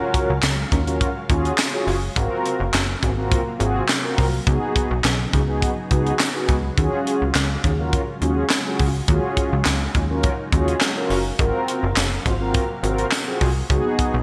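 Early-eighties boogie funk with a danceable, late-night mood, set in a straight four-four groove and cut from a longer piece. A tight, acoustic funk drum kit sits up front with a high-tuned snare, kick, hi-hat and handclaps, all in gated reverb. Beside it, a punchy analog bass built from sawtooth and pulse waves plucks along with a fast attack, decaying notes and a moving notch. Mellow synth brass, round and detuned with a filter sweep and chorus, carries the accompaniment over chords cycling through Ebm11, Ab13 and Db9sus4. In the background, a silky string machine holds slow-attack sustained chords with ensemble chorus, and a jingly, close and dry tambourine enters at 0.4 seconds. The bright digital production places the mix in a lush hall reverb with small room ambience.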